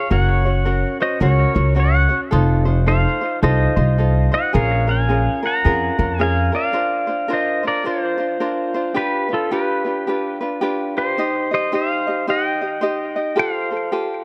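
A clean, compressed electric pedal steel guitar carries the melody up front with fingerpicks, slide and volume swells through delay, over light fingerpicked acoustic ukulele and a woody, thumpy pizzicato upright bass that plays only until 6.5 s, in a dreamy, relaxed Hawaiian excerpt at 108 BPM with a swung 4/4 feel, moving from Bb minor to Bb major at 6.7 s in a small, lightly reverberant room.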